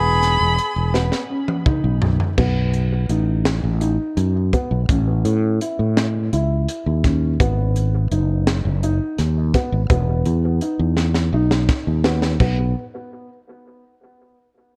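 A bowed violin with a rich, vibrato-laden tone and a clear flugelhorn second line open this bright, intricate progressive band excerpt in 7/8 at 168 BPM. Both are touched by tape echo and fall away by 0.9 seconds, while a dark, boxy baby grand piano plays mellow arpeggios and a round, up-front fretless bass holds the low end over chords moving from Emaj7 through B7, A and G#m7. A crisp fusion kit with a punchy kick and high-tuned snare enters at 0.2 seconds and drives on from there, with drum fills, and the whole piece sits in studio reverb with the warbling pitch drift of worn cassette tape.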